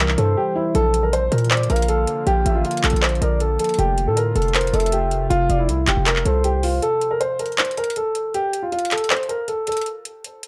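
Menacing and dark, this trap-style hip hop excerpt moves at 158 BPM in 4/4 with a half-time feel, moving through C, Bb and F chords. A worn, boxy grand piano carries the melody up front, its long sustain softened by a low-pass filter, while a punchy 808-style bass hits hard with a heavy sine tone, a noise layer and a fast, decaying attack. Electronic trap drums with metallic hi-hats and handclaps sit prominently in the mix, and in the background a lo-fi, detuned tape-like pad holds nostalgic, warbling chords through chorus and built-in reverb. A smooth, gliding portamento lead adds a quiet second line with vibrato, chorus and digital delay. After a brief break between 0.4 and 0.7 seconds, the pad, bass and lead drop out at 6.8 seconds, leaving piano and drums over light reverb until the piano stops at 9.9 seconds.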